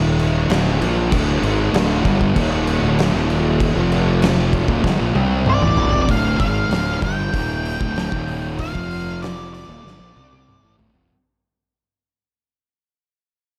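A straight 4/4 stoner and doom metal groove, ominous and hypnotic, opens with two thick, dark fuzz guitars grinding out the riff in the background over a growly, overdriven fingered bass, joined a moment later by an oversized low-tuned drum kit with a fat snare and punchy kick sitting gritty and up front in a bright stone room. An octave-fuzz lead guitar with slapback echo enters at 5.5 seconds, drum fills close each phrase, and the cut from a longer piece fades out from 6.1 seconds under light reverb.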